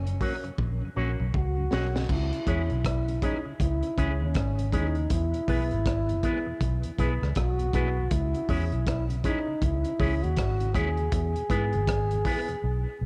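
Heard in a small room through an echo-heavy mix on cassette tape, this laid-back, serious roots reggae excerpt at 80 BPM sets a dark trombone, with light vibrato and scooped notes, on the melody through tape echo, over a round, foam-muted fingered electric bass and a gritty, saturated breakbeat kit with a high-tuned snare that plays a fill from 0.6 to 2.1 seconds, while a twangy, envelope-filtered electric guitar in spring reverb and tape echo, a reedy electric piano stabbing with fast tremolo in the background, and a very quiet tonewheel organ with key click fill out the harmony before the drums fall silent at 12.6 seconds.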